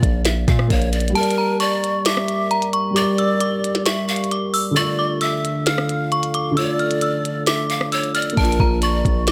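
This eerie, dark trap excerpt opens on a half-time break: a breathy bamboo pan flute with vibrato, chiff and tape echo, a mellow, boxy grand piano with audible action noise under a low-pass filter, an aggressive distorted 808-style bass, and a glitchy, overdriven drum kit of soft kick, tiny snare, rim click and clicky hats. At 1.2 seconds a metallic, inharmonic FM bell takes the melody up front, warbling through chorus and phaser, while the bass drops out and the kick is muted; soon after, a deep, detuned square-and-sawtooth analog pad with a slow attack and chorus adds sustained, moody chords. The heavy bass and the kick come back at 8.4 seconds, set in a digital ambience.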